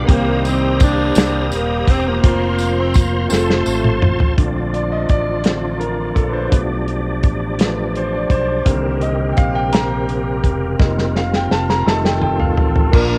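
A muffled soul drum kit with dark cymbals sits up front in this reverent, uplifting slow gospel passage at 56 BPM in 6/8 and Bb major, adding drum fills as a round, punchy fingered electric bass, a reedy tonewheel organ with key click and a fast rotary speaker, and a briefly heard jingly tambourine support a tight, softly attacked saxophone section melody that gives way at 4.4 seconds to a clear, long-sustaining concert grand piano solo, with cassette tape coloring on most parts and light studio reverb overall.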